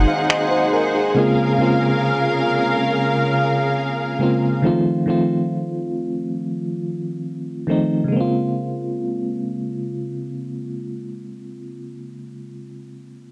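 An FM electric piano with tremolo carries this late-night, moody contemporary R&B excerpt in Bb minor at 69 BPM, its fast-attack, decaying tones and faint noise layer sitting up front through a cassette-tape grain until 13.3 seconds. A lush, bowed studio string section with vibrato holds sustained chords close and intimate, also colored by cassette tape, until 4.6 seconds, while a brief burst of dry, analog electronic finger snaps lands at 0.3 seconds. The harmony moves through Ab7, Bbm7 and F7 before returning to Bbm7, all framed by light reverb and the hazy character of a home cassette recording.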